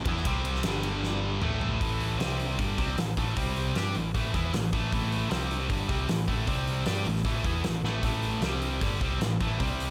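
Menacing and driving, this short hard rock excerpt in A minor charges along at 154 BPM in a straight 4/4, cut from a longer piece. A scooped, high-gain guitar, double-tracked, distorted and up front, hammers out a riff over power chords on C, G and A alongside a growly, overdriven picked electric bass with a punchy, amped edge. A huge arena drum kit with a fat snare and punchy kick sounds big and natural in a small room ambience, with drum fills around 1.0 and 7.8 seconds pushing the riff forward.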